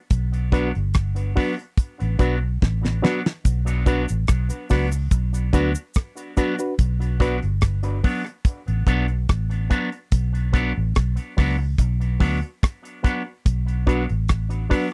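A dry, close 1970s-style studio sound frames this meditative, deep dub reggae excerpt in B minor at 72 BPM, where a damped drum kit with a fat snare and tight kick sits up front beside a dark, round, foam-muted fingered bass, a clean picked electric guitar through an envelope filter and tape echo, reedy, worn, slightly out-of-tune electric piano stabs with tape echo, and a brief cabasa from 3.5 to 6.8 seconds, after a drum fill closes the opening break at 3.5 seconds.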